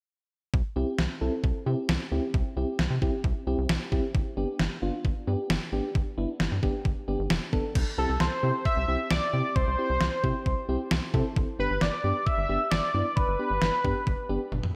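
Synth-pop at 133 BPM in a straight 4/4, this bright yet wistful excerpt, cut from a longer piece, moves between C and G chords in a lush, 1980s-style digital hall. From 0.5 seconds, a detuned 8-bit drum machine sits up front with a thumpy kick, a medium-tuned snare, toms and crash cymbal, its overdriven, sampler-style hits wrapped in gated reverb. A rubbery square-wave bass bounces underneath with a hollow, resonant filter pluck and a dark tone. An FM electric piano fills in the accompaniment with a mellow, warbling, vintage sound carrying a faint noise layer. At 8.0 seconds, a bold, octave-doubled sawtooth lead enters up front with chorus, delay and vibrato, adding a retro edge to the melody before a drum fill at 14.5 seconds closes the passage.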